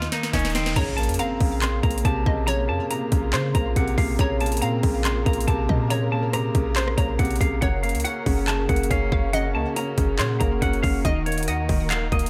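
Eerie and menacing, this half-time trap passage, cut from a longer piece, opens on a drum fill before an electronic impact lands at 0.8 seconds, with a riser sitting in the background. The trap kit is overdriven and up front, its hard-clipped kick, sharp snare and metallic hats joined by handclaps, rim clicks and a crash. A clean 808-style bass rumbles deep and boomy, its sine tone decaying after each fast attack. A semi-hollow electric guitar carries the melody with a picked, compressed tone and digital delay, over a clear concert grand piano whose smooth, vintage accompaniment rings with long sustain. From 0.8 seconds a hollow square pluck adds a bright, detuned second line colored by ring modulation, a filter sweep, chorus and delay, while a muted string section, bowed con sordino, holds veiled chords in the background. The harmony moves from Bbmadd9 to Gb and then to Ebm at 11.0 seconds, in a dry mix with little reverb.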